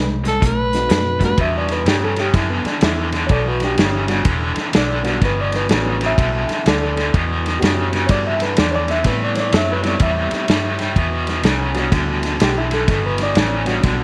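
A light reverb and studio ambience frame this brooding, soulful electric blues shuffle in E minor, cut from a longer piece and moving at 125 BPM in 4/4 with a swung eighth-note feel. An overdriven, bright electric guitar sits up front playing a picked riff in its low register, colored by harmonic tremolo, while a vintage muted fingered bass adds a dark, round, punchy foundation beneath it. A vintage acoustic drum kit enters at 0.2 seconds with hi-hat, kick, ride and snare, its dark cymbals, tight kick and rolled-off top giving the groove a mellow weight. A raspy, forceful tenor saxophone cuts in briefly up front with a gritty, lightly vibrato-tinged phrase that ends at 1.4 seconds, just as the harmony settles from B7b9 onto Em9. From 0.7 seconds a reedy overdriven electric piano fills out the accompaniment through a combo amp with fast tremolo, spanning a broad range as the chords move to Am9 and back to Em9.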